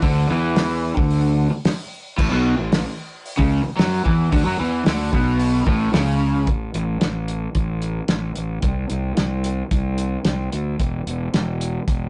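Kaleidoscopic and hypnotic, this short cut from a longer psychedelic rock piece moves at 112 BPM in a straight 4/4, opening on an A chord as a bright, double-tracked overdriven electric guitar riff sits up front beside a round, fuzzed fingered bass and a cloth-damped, thuddy drum kit with dark cymbals, a medium-tuned snare and a tight kick. The guitar stops at 6.5 s, where the harmony drops away and the bass and drums carry on until about 12 seconds. The rough rehearsal-room sound has warm saturation, a moderate studio reverb and a rolled-off top.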